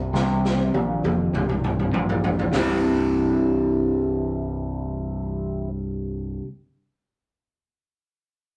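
A bright, twangy electric guitar through a small old amp plays a phased, slightly broken-up picked riff over a growling, overdriven fingered bass and a very quiet, round, dark tonewheel organ holding sustained chords through a slow rotary speaker, in this hazy, hypnotic psychedelic rock fragment. A raw garage drum kit, gritty and saturated with a medium-tuned snare, hi-hat and toms, plays a fill from 0.2 seconds and drops out at 2.7 seconds, and the organ stops at 5.7 seconds while guitar and bass carry on. The rough rehearsal-room sound has tube saturation and moderate studio reverb, with guitar and drums up front.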